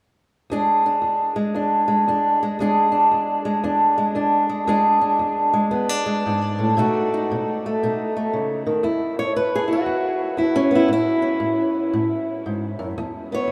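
A swung 4/4 feel at 115 BPM carries this soulful, gritty acoustic country blues fragment, cut from a longer piece, where a lone fingerpicked old ladder-braced acoustic guitar plays from 0.5 to 13.5 seconds, ranging from E2 to C#5. Up front in the mix, the guitar sounds woody and boxy with the dark tone of old strings, touched by tape echo, while the whole recording sits in a huge, wet ambient reverb that suggests a vast, echoing space. The harmony moves from E7 to B7 in E mixolydian, then shifts to E major at 8.8 seconds, cycling through E5 and A before returning to E5.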